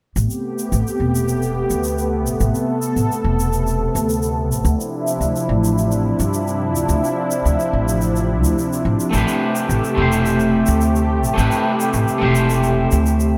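A thick, detuned sawtooth pad with chorus and phaser opens this wistful, smooth sunset chillout excerpt over a woody, dark pizzicato upright bass and an airy brushed shaker, drifting from Am9 to Dm9 and back in a dreamy, reverb-soaked mix before a twangy, slightly broken-up picked electric guitar with analog delay joins at 9.1 s.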